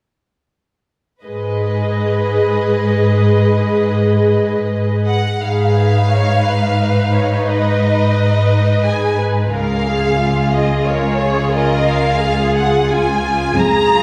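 Strings open this sorrowful, longing passage from a cinematic film score at 1.2 seconds: a rich, distant violin section carries a second line over smooth, even violas and a focused, up-front cello bass, unfolding in a rubato 3/4 at 88 BPM in G# dorian. At 5.1 seconds a warm, expressive violin melody enters with soft attack and vibrato, sitting forward with a smooth top and a lush sound, as the harmony moves from G#m to C# at 9.5 seconds. A wet scoring-stage reverb surrounds the strings, heard from further back in the room.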